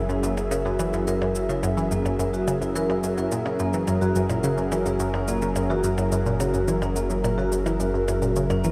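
Ambient, sequencer-driven space music at 107 BPM in a straight 4/4, mysterious and hypnotic, resting on an F#7 chord throughout this short excerpt. Up front, an evolving, detuned sawtooth pad holds sustained chords with a filter swell and chorus, beside a nasal, filter-plucked analog riff coloured by chorus, phaser and delay, while a round sine sub bass anchors F#1. From 0.1 s, a mellow vibraphone with soft mallets plays ringing, delayed arpeggios with motor vibrato, and electronic, tape-warm cabasa and percussion blips sound through delay, set in a huge reverb that suggests a vast, echoing space.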